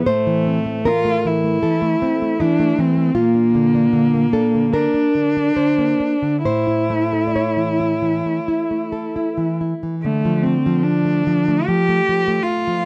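This romantic duo for cello and classical guitar, an excerpt from a longer piece, has an elegiac, solemn mood, moving in a flexible rubato 4/4 at roughly 66-79 BPM in D minor. A single bowed cello carries the melody between A3 and G4 with a rich, expressive tone, colored by vibrato and portamento. The fingerpicked nylon-string guitar supplies a warm accompaniment ranging from A2 to D5, and its finger squeaks are audible. Both instruments sit up front in a dry, close 1970s-style studio sound touched by light reverb. The harmony passes from Am through Bb to A before settling on Dm at 10.0 seconds, where a new section begins and carries the passage to its end at 12.9 seconds.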